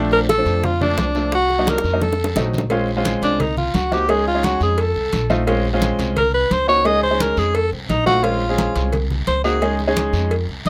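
A warm grand piano with long sustain and a woody pizzicato upright bass open this sultry, fiery Afro-Cuban jazz excerpt in Bb minor at 174 BPM, joined almost at once by the breathy alto saxophone, tight, high-tuned bongos and cowbell, bright, damped congas in the background and a raspy, vintage guiro. After a drum fill, the saxophone takes an up-front solo from 2.7 seconds, its clear tone marked by vibrato and scooped notes over chords that cycle from Bbm7 through Cm7b5 and Dbsus2 to F7. The close, detailed recording has little reverb.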